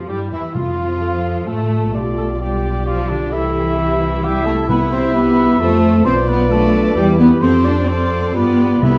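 Quick classical-period orchestral movement in 3/4 at 131 BPM, set in C major with a dramatic, restless mood, cut from a longer piece. A very quiet, distant violin section carries the melody with a focused, vibrato tone, while a second, lush violin section, a mellow flute, a distant cor anglais and a clarinet in the background weave secondary lines around it. Violas supply smooth, even accompaniment, and the horn section holds tight sustained chords behind the texture as a clear, roomy trumpet adds stabs. The low end is prominent: a focused cello section and an up-front, close double bass section anchor the bass, and round, dry timpani on soft mallets strike C3 near 0.6, 4.7 and 8.8 seconds. The harmony moves from G7 through F and C to Fmaj7, Bdim and Em7 before returning to G7, all in a dark production with moderate recital hall reverb and some lossy compression artefacts.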